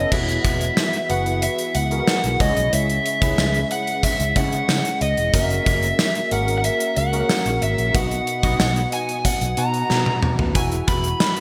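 A dark, overdriven lead guitar sits up front with the melody, its picked tone from a small cranked amp trailed by delay, in this nostalgic, uplifting 1980s-style pop clip at 92 BPM in E lydian. A clean, direct tine electric piano with ensemble chorus and a bright, amped fretless bass with subtle chorus carry the progression from Eadd9 through C#m, F#add9 and B, while a gated drum kit with a punchy kick, bright cymbals, tambourine and toms drives along. A drum fill at 9.9 seconds leads back to Eadd9 at 10.6 seconds, all set in a lush hall reverb with bright digital production.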